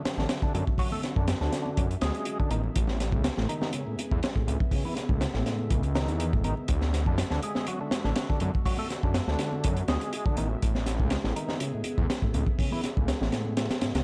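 A dark, warm production with light reverb and a small-room ambience frames this playful, funky breakbeat excerpt, cut from a longer piece and moving at 122 BPM in D lydian with a gentle 16th-note swing. Up front, a crunchy breakbeat kit of kick, hi-hat and high-tuned snare sounds gritty and saturated, its top rolled off and its kick tight. Beside it, a detuned saw bass sits thick and menacing, its beating tone sustaining low with a fast attack. An overdriven tonewheel organ plays a percussive riff, its third-harmonic percussion and chorus vibrato coloured by tube saturation and tape echo. In the background, a warbling, lo-fi tape-like pad holds nostalgic sustained chords through chorus, phaser, sampler grit and sidechain pumping, while very quiet, bright congas add compressed percussion. The harmony moves from Dmaj9 to Amaj9 at 2.5 seconds and alternates between the two through the 14-second passage.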